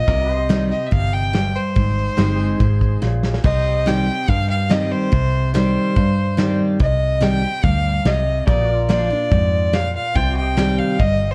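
A cassette-tape sheen and a moderate studio reverb color this short, lonesome honky-tonk and classic country fragment, which feels heartbroken and steady in a straight four. Up front, a clear fiddle carries the melody with a smooth, even bow and light vibrato, bathed in plate reverb. Beneath it, a picked steel-string acoustic guitar gives a warm, auditorium-like accompaniment, while a foam-muted electric bass adds a round, punchy, amped bottom end. In the background, a bright, twangy pedal steel guitar plays clean, compressed sustained chords with slide and volume swells. A soft brush kit with dark cymbals, a medium-tuned snare and a tight kick keeps time, and its fill at 3.0 seconds leads into a new section at 3.4 seconds, where the harmony moves from C minor through B-flat and settles back on C minor.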